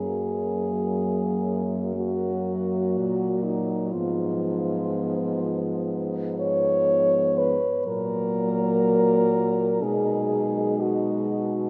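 A vast, wet cathedral reverb with a long 5.2-second decay surrounds this serene classical passage for horn quartet, cut from a longer piece. At a slow, rubato 61 BPM in 4/4 and F# major, the four French horns sound together throughout its 11.7 seconds. The lead horn carries the lyrical melody up front with a warm tone and light vibrato. Beneath it, a dark, punchy horn with a smooth top plays the second line, while another shadowed horn with vibrato supplies the accompaniment. The bass horn sits distant and roomy, mellow, with a soft attack and light vibrato. The harmony moves from F# to Fdim/Ab at 3.9 seconds, then through F#/A# to G#m/B near the close.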